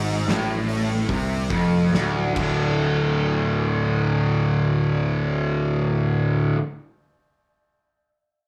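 Stoner and doom metal in D minor at a heavy, hypnotic 66-77 BPM, this short cut opens on an up-front, double-tracked fuzz guitar riff over a growly, punchy picked electric bass with overdrive, the harmony moving from D minor to a D power chord at 2.4 seconds. An oversized, low-tuned acoustic drum kit with a fat snare, punchy kick and dark cymbals plays from 0.3 to 2.6 seconds in a bright, pumping stone room, slowing down and closing with a fill before the guitar and bass carry on into a second section from 2.8 seconds. Light studio reverb gives the mix a touch of space.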